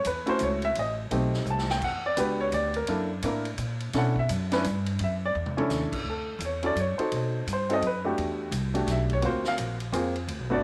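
Light reverb gives this smoky, swinging jazz piano trio fragment an intimate, up-front piano with audible action noise and short sustain, carrying the melody as a solo over a woody pizzicato upright bass. In a lilting 3/4 swing, the big-band drum kit sits distant and roomy, with dark cymbals, a medium-tuned snare, a boomy kick and a rolled-off top, adding brief fills near 1.5 and 5.3 seconds. Rich extended and altered chords move beneath the line across two matching passages, the second starting at 6.1 seconds.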